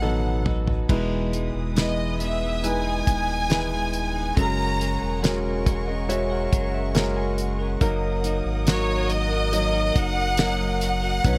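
Bright, intense symphonic violins carry the melody of this emotional, hopeful pop ballad, their lush bowed vibrato sitting up front in a slow, straight 4/4 at 70 BPM, tuned to A4 = 436 Hz. A clear concert grand piano accompanies with long sustain and audible action noise, adding its own fill between 5.2 and 7.8 seconds, while a deep sub bass with octave, built from sine and triangle tones, sits full and sustained beneath. A damped 70s drum kit, dry and mid-forward with a fat snare and tight kick, opens the excerpt with a fill. Throughout, twangy, compressed twelve-string electric guitar arpeggios with subtle chorus ring in the background, and from 0.9 seconds a distant studio string section adds soft, expressive sustained chords with portamento. The harmony moves from B7 to Emaj7, F#add9 and D#m/F#, all set in a small room ambience.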